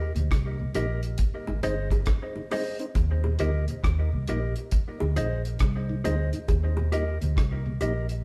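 A clean, compressed electric guitar and a round, foam-muted fingered bass open this sunny roots reggae excerpt at a relaxed 68 BPM in Eb major, with a swung sixteenth-note feel. The bass sits up front with an amped, vintage tone, while the guitar's dark, fingered accompaniment carries an analog delay. A deep, dry drum kit arrives with hi-hat, rim click and a tight kick, its rolled-off top and smooth character placed close to the listener. In the background, a mellow tonewheel organ with audible key click turns through a slow rotary speaker and its own analog delay. Tight, high-tuned bongos, played with soft hands and also treated with delay, join at 1.5 seconds and stop at 6.9 seconds. The harmony moves between Eb and Ab, and the band plays live together in a stone room with a moderate reverb.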